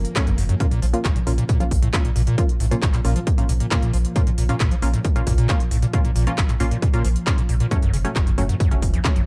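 Intense and industrial, this short cut from a longer driving peak-time techno track runs at 135 BPM in Bb harmonic minor, where an overdriven kick sits up front over a thick, saturated sub bass, a squelchy, resonant acid bass riff with lush chorus, muted, detuned dub chord stabs with dub echo, smooth tape-warm handclaps and hi-hats, a very quiet, moody pad drone and a brief background swell in the first 0.6 seconds, with sidechain pumping on the basses, stabs and hats as the chords move from Gbm to Bbm and back to Gbm at 7.7 seconds in a dry mix.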